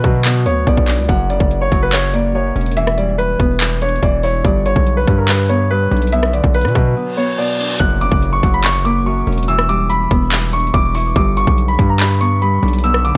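Dark and hard-hitting, this half-time trap cut at 143 BPM pairs a warm concert grand piano melody, filtered and trailed by dub echo, with a mellow, ringing Celtic harp accompaniment, both moving through a Bm, F#, Em7, G progression. Underneath, a punchy, saturated 808-style bass and an overdriven trap kit of hard-clipped kick, metallic hi-hats, handclaps and rim clicks sit up front in a dry but echo-heavy mix. A break at 7.0 seconds brings a reverse cymbal leading into an electronic impact at 7.8 seconds, launching the second section.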